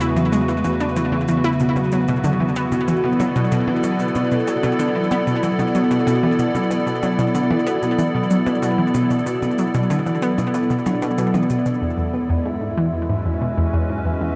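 A straight 4/4 pulse of overdriven cabasa and electronic percussion blips, treated with delay, drives this hypnotic, mysterious excerpt of sequencer-driven ambient space music until 11.8 seconds, while an up-front analog pluck riff, round and detuned with chorus, delay and shimmer reverb, sits over an evolving wavetable pad whose morphing, warbling sustained chords carry chorus and shimmer reverb. A vibraphone played with soft mallets adds mellow, ringing arpeggios through delay and shimmer reverb, and at 12.1 seconds, shortly after the harmony moves to a new chord, a bubbling, resonant stepped-filter texture joins. The whole excerpt is bathed in a huge, wet ambient reverb and carries a vintage cassette-tape character.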